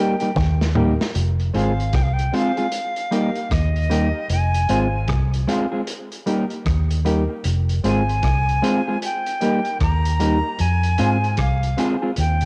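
Roots reggae at 76 BPM in F minor, meditative and hypnotic, with a bright, reedy flute singing the melody over a mellow electric guitar, gritty breakbeat drums with a fill from 0.4 to 1.1 seconds, a round, foam-muted bass up front, woody upright piano stabs in the background and a brief, very quiet twangy envelope-filtered guitar riff, all alternating between Eb and Fm in a small room with a cassette-tape home-recording feel and tape echo on the flute and mellow guitar.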